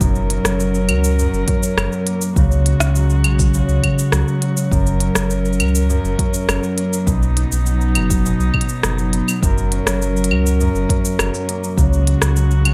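Set in light reverb, this folktronica piece moves at 102 BPM in F# major with a warm, pastoral mood. Up front, a ringing, thumb-plucked concert harp plays arpeggios through digital delay. Beneath it, a muted string quartet holds veiled, con sordino chords in plate reverb, and a round, sine-like sub bass with tube saturation follows the harmony from F# through C#sus4, back to F# and on to B before closing on C#sus4. An electronic drum kit of crisp hi-hat, claves, rim click and shaker runs throughout, while a deep, tape-tinged electronic kick plays until 11.9 s.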